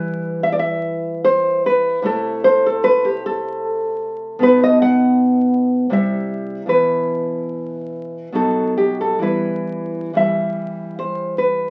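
A solo nylon-string guitar opens at once in E minor, fingerpicked and full-bodied, set up front against the crackle of a very old 78 rpm record. This is a wistful, passionate romantic piece for classical guitar in 3/4, played rubato so the pulse drifts between 60 and 81 BPM, with the instrument tuned to A4 = 444 Hz. The harmony moves from Em through Am/C to B, then C, Bsus4 and B before settling back on Em at 9.2 seconds. The guitar ranges from B2 up to F#5, and finger squeaks surface in its acoustic, classical tone. A moderate large-studio reverb with a 0.8-second decay surrounds the playing, and the 11.7-second passage is cut from a longer piece.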